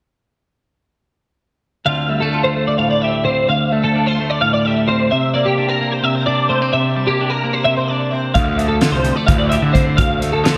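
This excerpt of math rock and midwest emo opens at 1.9 seconds with two clean, picked guitars: a bright semi-hollow electric guitar carrying the accompaniment with a slapback echo, and a compressed twelve-string electric guitar spinning high arpeggios through ensemble chorus, analog delay and slapback. The mood is wistful and restless, moving in an odd 7/8 metre at 259 BPM counted in eighths with a straight feel, in D minor. The harmony shifts from Dm9 to C9 and back to Dm9 at 8.4 seconds, where a growly, overdriven fuzz bass and a loose indie drum kit enter together, the kit bringing a fat snare, punchy kick and hi-hat in a pumping studio room. Every part sits up front, wrapped in a moderate, lush hall reverb that gives the short passage a big arena sound.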